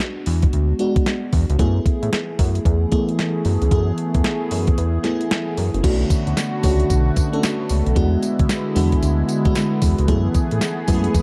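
This excerpt opens on an FM electric piano layered with a soft pad, its dreamy chorused chords on E7 sitting over a crisp, sampler-style 8-bit drum machine with a thumpy kick, medium-tuned snare, hi-hat, tambourine and crash, joined at 0.3 seconds by a fat, detuned sawtooth bass with an evolving filter sweep. A swirling, phased analog pad enters at 1.6 seconds with sustained chords from F#m11, and a break at 4.8 seconds leads into a second section that moves through Bm9 and E7 before returning to F#m11. It's a punchy, bouncy new jack swing groove in F# minor at 113 BPM with a 16th-note swing, given a dark production and light reverb.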